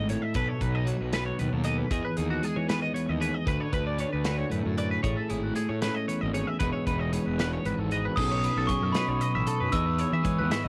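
A close, intimate home cassette recording of intricate, playful math rock and midwest emo in a straight 6/8, in which a twangy twelve-string electric guitar picks bright accompaniment beneath a second, up-front twelve-string spinning arpeggios through lush chorus and tape echo, a round fuzz bass and a studio drum kit with a punchy kick and pumping room drive the Emaj7-centred progression, and a mellow, bell-like glockenspiel played with rubber mallets enters at 8.2 seconds with a short melody over the closing B9 to Emaj7 turn before the cut.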